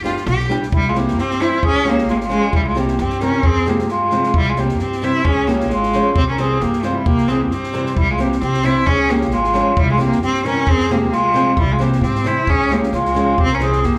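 A clear, focused bowed cello carries the melody up front from the start, its vibrato singing over fingerpicked nylon-string guitar, pizzicato upright bass and a compact cocktail drum kit. This is fiery, bittersweet Balkan wedding-band folk in C phrygian dominant, moving at 133 BPM in a 2/4 metre with a light swing on the sixteenths. At 0.7 seconds a mellow, reedy single-reed accordion joins with a round second line in its upper middle range. The guitar shows small finger squeaks, the bass sounds woody and dark, and the drums pair a punchy kick with a high-tuned snare. Slapback echo touches the cello, guitar and accordion, while the whole band comes across as a live gig heard through the venue's PA, with club reverb and small-room ambience. Cut from a longer piece, the passage runs through two statements of the same section, circling between C, Db and F minor.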